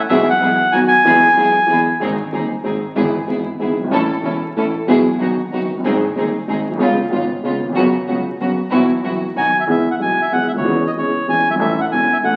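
Heard through the crackle of a very old 78 rpm record and a wet, large studio reverb, this nostalgic, elegant tango excerpt sways in a rubato three-beat feel. A reedy, dark, airy bandoneon carries the melody up front, falling silent after 1.8 seconds and returning at 9.4 seconds, while a boxy concert grand piano with deep bass and long sustain accompanies throughout. Rich, focused chamber strings add bowed stabs with vibrato until 9.5 seconds, and a distant bowed double bass sits in the background, expressive with vibrato and portamento.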